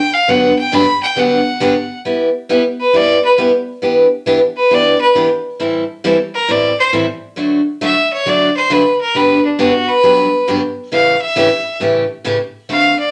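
A clear, intense bowed fiddle carries the melody from the very start, played by a single player up front with light vibrato, in a down-home, swinging country tune at 135 BPM in G major. A bright, picked steel-string acoustic guitar enters at 0.3 seconds with finger squeak audible, comping through changes such as Gmaj7, G6, Em7, Am7, D and A7. The pair sits in a wet studio reverb with a short decay, and the passage is cut from a longer piece.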